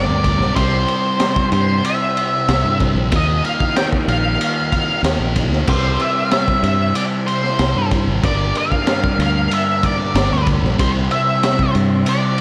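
A straight 4/4 breakbeat from a crunchy, gritty acoustic kit, with a punchy kick, high-tuned snare and dark cymbals, comes in at 0.2 s beneath a round, up-front fingered bass that drops out at 12.0 s, in a mysterious, trippy slice of psychedelic rock cut from a longer piece. A thick, double-tracked fuzz guitar with phaser drives the riff, while an up-front octave-fuzz lead guitar sings the melody through delay. In the background, a smooth tonewheel organ with chorus vibrato, key click and a stopped rotary speaker holds sustained chords over a Gm, C and Ebadd9 progression, all bathed in a dreamy, reverb-soaked hall.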